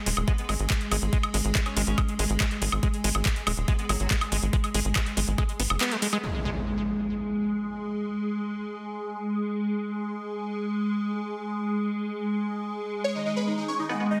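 An evolving wavetable pad, bright and morphing with ring-modulated shimmer, holds sustained chords through this psychedelic trance excerpt at 141 BPM in G# minor, colored by ensemble chorus, phaser and sidechain pumping. Beneath it, a tight, nasal sequencer bass drives the low end beside an overdriven, knocking electronic kick and a garage drum kit of handclaps, hi-hat and woodblock in a small room. A squelchy, resonant liquid acid bass plays a riff with chorus and delay, while a metallic, aggressive FM wobble bass sits in the background as a second line. At 6.2 seconds the rhythm parts have stopped and an electronic impact hits, after which the pad carries on alone until a huge, detuned supersaw melody arrives at 13.0 seconds. The mood is intense and psychedelic, and the master is dense and heavily limited.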